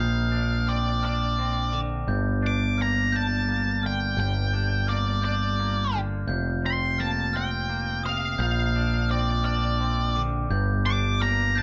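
Recorded live by a band in one room with light reverb, this brooding, cinematic post-rock passage moves at a slow 57 BPM in 6/8 in G minor, cycling through Bbadd9, Gm and Fsus4. Up front, a growling, overdriven picked bass and a dark, distorted octave-fuzz lead guitar carrying the melody dominate, while a clean, twangy fingered electric guitar with vibrato plays arpeggios. High in the background, a vintage, bell-like glockenspiel struck with brass mallets rings out its own arpeggios.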